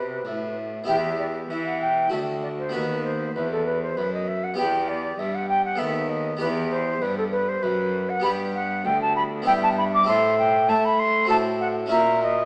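In a straight 3/4 at 98 BPM, this grave, solemn baroque-style sonata movement in E minor, tuned to A4 = 438 Hz and cut from a longer piece, sets an airy concert flute melody with vibrato and a crisp attack over a brilliant, plucked harpsichord accompaniment with three sets of strings, both up front, while a single bowed cello carries the bass with a smooth, even tone as the harmony moves from E minor through D, G and A minor to a closing F#7/A#, all heard through a small-speaker sound in a wet recital hall reverb.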